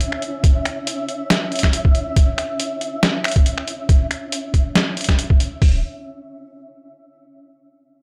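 Half-time 16ths with a light swing at 139 BPM drive this brooding, dark deep dubstep excerpt, where two compressed, muffled, pitched-down sampler-style trip hop drum kits sit up front, one with finger snaps, hi-hat and a medium-tuned snare, the other with hi-hat and a thumpy kick entering at 0.4 seconds, over a grainy, flickering, detuned granular texture with built-in reverb, until a deep, round, soft sub bass touched by tube saturation sounds a D1 at 5.6 seconds, in a dry, gritty hardware recording.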